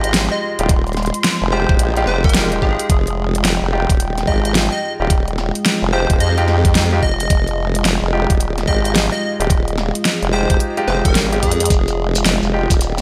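Glitch hop at 109 BPM in F minor, this playful, gritty passage, cut from a longer piece, sits on a swung sixteenth-note feel over a single Fm9 chord. An overdriven, knocking electronic kick enters at 0.7 seconds and sits up front beside a dubstep kit of hi-hat and a huge, overdriven snare bathed in gated reverb, with a drum fill at 11.4 seconds. Beneath them a saturated, compressed formant-sweep wobble bass growls low with chorus, while a dark analog pad built from detuned sawtooth and triangle layers with a sub octave holds moody sustained chords in the background, pumping against the sidechain. A clear, intimate concert grand piano adds polished stabs, its action noise audible, with delay and sidechain pumping of its own. On top, a punchy, catchy unison lead of detuned square and sine waves with a noise layer and filter sweep carries the melody through lush chorus and delay, and a grainy shekere slips in at 11.7 seconds. 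The whole mix has a bright 1980s-style digital sheen with light reverb and digital ambience.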